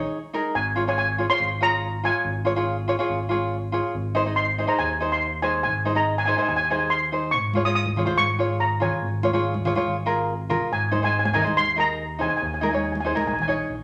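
Sunny and carefree, this calypso excerpt moves at 142 BPM in a straight 4/4, cut from a longer piece. A shimmering, metallic steel pan carries the lead melody up front, struck with medium rubber sticks and heard in a boxy small room. A light, fingerpicked tenor ukulele sits close beside it with an acoustic accompaniment, while a smooth, dark synth bass blends sawtooth and square waves with ring modulation, its fast attack giving way to sustained notes underneath. At 7.5 seconds bright congas with a thin skin join from the background, adding a small-room hand-drum color until 13.5 seconds. The harmony circles between Db over Ab and Ab, framed by an Ebsus4 at the start and close, and a large studio reverb gives the sound a generous, wet space.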